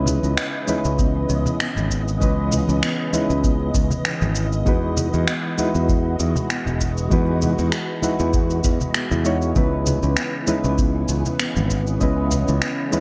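A bright 1980s-style digital sheen and a moderate plate reverb frame this relaxed, smooth sunset chillout excerpt, cut from a longer piece in C# minor at 98 BPM in 4/4, with a light 16th-note swing. Round, gentle electric-piano-like synth keys carry the accompaniment through chorus, tremolo and digital delay, while a silky vintage string machine holds sustained chords treated with phaser and ensemble chorus. A woody, hollow-sounding kalimba plucks soft arpeggios in the background, its short notes echoed by digital delay. Up front, a growly, punchy fingered electric bass anchors the low end until 12.6 seconds, joined at 1.0 seconds by a deep, tape-tinged electronic kick. Electronic shaker and finger snaps with gated reverb, along with softly played congas set back in the mix, keep the groove moving as the harmony drifts from C#m9 to Emaj9 and back to C#m9.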